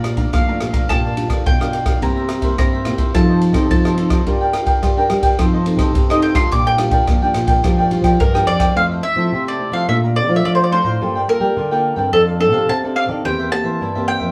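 A woody, double-strung mandolin sits up front, taking a solo until 8.8 seconds in this sunny, festive samba-and-choro passage cut from a longer piece, over crisp, brilliant picked cavaquinho, a fingerpicked classical nylon-string guitar, a warm thumb-plucked nylon-string guitar bass line, and an open jazz kit of boomy kick, dark ride cymbal and rim click that drops out at 8.7 seconds, all played live together in a small room with a short, wet ambience.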